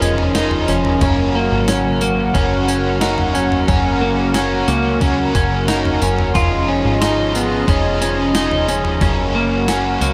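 Lush chorus and delay wash over the clean electric guitar arpeggios in this dreamy, floating dream pop excerpt in F# major at 90 BPM, joined throughout by a bright, crunchy guitar with harmonic tremolo and analog chorus, a hollow, flute-like pad sustaining mellow chords, a punchy, funky analog bass, and a thumpy 12-bit drum machine with overdrive playing kick, snare, tambourine and toms, all set in light digital ambience as the harmony moves between C#add9/E# and F#.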